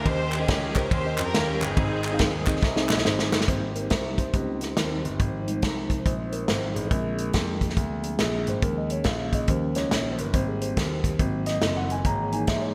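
A swung 4/4 groove at 140 BPM drives this uptempo gospel passage in Ab major, soulful and jubilant from the first beat. Up front, a soul drum kit plays hi-hat, kick, snare and ride, with a tight kick and a medium-tuned snare, its rolled-off top wrapped in gated reverb. Alongside it, a concert grand piano carries the bass line with deep, natural weight. A clear, bowed string section sings the opening melody until 2.5 s, while hollow group handclaps sit in the background, and a drum fill leads into the second section at 3.5 s. From there the mellow tine electric piano, clean through its built-in speakers, takes a solo that runs to the end over chords moving from Abmaj7 through Fm7/Ab and Bb7 to a closing Dbm6/Ab. Behind it, a soft, flute-like tonewheel organ holds sustained chords with key click, third-harmonic percussion, chorus vibrato and a fast rotary speaker, all framed by a lush hall reverb and a bright 1980s-style digital sheen.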